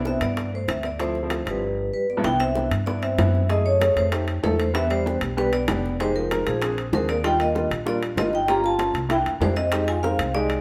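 Lively and danceable, this Afro-Cuban jazz excerpt moves at 192 BPM in a straight 4/4, with a metallic vibraphone with a fast motor vibrato carrying the melody over a breathy trombone second line full of scooped notes. A woody, thumpy pizzicato upright bass sits up front, while a clear concert grand piano supplies accompaniment as the harmony moves from Cmaj9 through Ebmaj7 to Fm9. Tight, very quiet bongos and ringing, dry metal-shell timbales fill out the percussion, and the band plays together live in a large studio room with moderate reverb.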